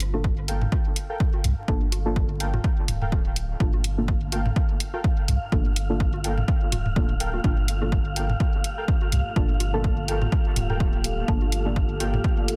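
Dense and heavily limited, with vinyl crackle over a close, fairly dry sound, this cut from a longer dub techno track feels hazy and nocturnal. A punchy, overdriven kick sits up front in a swung 4/4 groove, joined by a gritty electronic hi-hat and tape-tinged analog congas and toms in a small room. A soft, round sub bass pumps beneath a deep, mellow chord stab that carries chorus, phaser and dub echo on a single Gm9 harmony. Warbly lo-fi synth keys add a nostalgic riff with chorus and echo, while a breathy, wind-like tuned noise floats high in its own reverb. At 8.8 seconds a dark, moody ambient pad with a vintage, detuned character fades in slowly and sustains to the close at 12.6 seconds.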